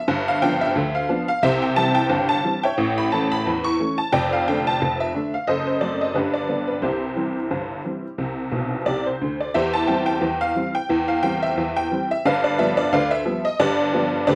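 Lively and jaunty, this short ragtime cut from a longer piece swings in 2/4 on a solo honky-tonk upright piano whose detuned, jangly, vintage tone sits up front with light reverb and close, detailed miking, spanning a broad range and adding a brief fill from 8.5 to 9.5 seconds before moving into a new section.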